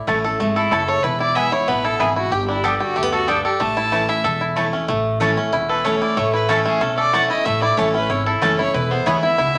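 A biting, nasal fiddle carries the melody in this driving, virtuosic bluegrass piece in A major at 187 BPM, entering at 0.6 s and sitting up front with a light vibrato beside a twangy, percussive banjo playing fingerpicked arpeggios. A bright, full-bodied picked guitar supplies the accompaniment, a woody double-strung mandolin adds stabs, and a pizzicato upright bass anchors the low end, all in a wet studio reverb. The chords move from A through E and G, with the music shifting into a new section at 4.9 s before this cut from a longer piece ends.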